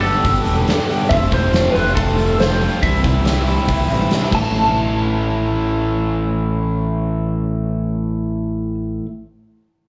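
A straight 4/4 pulse at 140 BPM drives this sunny, confident classic rock clip, cut from a longer piece and heard as a live gig through the venue's PA, with small room ambience and club reverb. The huge arena drum kit plays with a fat snare, punchy kick, bright crash and hi-hat in a pumping hall sound, then stops at 4.4 s, as the chords move from G to F to C and land on A. Up front, a biting, double-tracked overdriven guitar picks the riff with slapback echo, while a growling electric bass, direct and amped with overdrive, holds down the bottom. A lightly driven lead guitar, slightly broken-up and compressed, carries the melody through wah and slapback echo until 8.7 s. Beneath it all, a very quiet picked steel-string acoustic guitar adds accompaniment, with audible finger squeak and an auditorium sheen.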